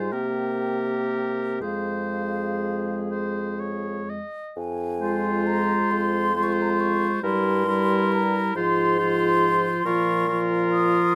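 A light reverb gives this short cut from a longer classical piece a gentle sense of space. It is a slow, lyrical and tender romantic movement for wind quintet in 6/8, shaped with a flexible rubato. The hollow, pure concert flute carries the melody with vibrato and a soft attack, while the oboe's warm, smooth-topped tone traces a second line beneath it. The bright clarinet and the mellow French horn supply the accompaniment, and the roomy bassoon holds the bass with light vibrato until 11.0 seconds as the upper voices sound on to 11.2 seconds. A new section opens at 4.6 seconds, where the harmony passes through a diminished chord before settling into minor chords.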